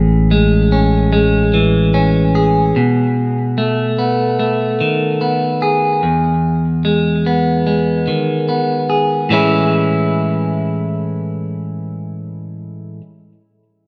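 In a straight 4/4 feel, this cinematic, hopeful rock excerpt puts a clean, picked electric guitar up front playing arpeggios over Amaj7, B6 and Emaj7, colored by spring reverb and tape echo, while a punchy, direct-amped fingered electric bass sits on A1 only until 2.7 seconds, the whole set in a lush digital hall ambience.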